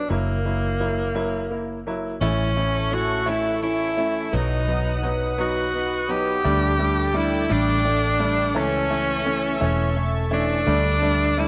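A small room's light reverb frames this fragment, cut from a longer piece, and faint mains hum and lossy compression artefacts give it a worn, lo-fi cast. It is a melancholic, aching pop ballad in a straight six-eight, with a clear, punchy tenor saxophone out front carrying the solo melody in a jazz style, its forceful notes scooped and shaded with vibrato, a smooth top and a touch of tape echo. Beneath it, a dark, round, foam-muted electric bass sits up front with an amped vintage tone, while a concert grand piano plays open, clear accompaniment with a deep low end. At 2.2 seconds a shimmering, retro synth pad slides in on a slow attack, its bright, chorused pulse-width tone, edged with sawtooth, triangle, sub octave and ring modulation, holding sustained chords high above, while a very quiet, full-bodied jumbo acoustic guitar picks arpeggios until 6.5 seconds. The harmony moves from F#7 through A and B, then settles into a second passage that rocks between Dsus4 and A/C#.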